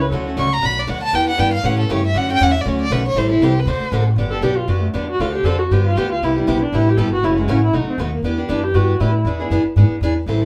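Jazz manouche in a charming, lively swing, cut from a longer piece, with a bowed violin playing the melody in an intimate, airy sul tasto voice with light vibrato until about 4.1 seconds, when a dark, woody viola takes over the solo from 4.3 seconds. Beneath them a thumpy pizzicato upright bass on gut strings and a boxy, parlour-style picked steel-string guitar, finger squeaks audible, carry the jazzy seventh-chord changes. The band plays live in one room with a wet studio reverb and a faint mains hum, every part sitting up front.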